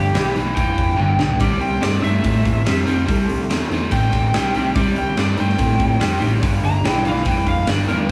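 A bright, overdriven slide guitar carries the melody through this raunchy, gritty blues rock and southern rock cut at 143 BPM in G mixolydian. Beneath it sit a double-tracked, compressed picked guitar riff up front, a growling overdriven fingered bass, and a huge arena drum kit with a punchy kick, medium-tuned snare and pumping room sound that plays a fill at 1.0 s. A very quiet, mellow tonewheel organ holds sustained chords with key click and slow rotary speaker. The band plays live in one small room as the harmony moves from G to C at 1.4 s and back to G at 6.4 s.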